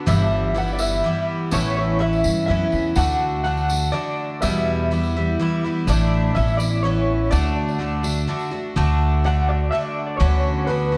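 A moderate scoring-stage reverb surrounds this pastoral, peaceful acoustic folk excerpt in D major, moving at 124 BPM in a straight 3/4. Up front, a shimmering, octave-doubled twelve-string acoustic guitar picks through chords such as G6, Aadd9, Em and D. A woody pizzicato upright bass on steel strings holds the low end, and a twangy, slightly broken-up electric guitar through a small old amp carries the tremolo-laced melody. A jingly tambourine sits distant, as if in a large room, until 8.5 seconds, and the passage closes on a Bmadd9/D chord at 10.2 seconds.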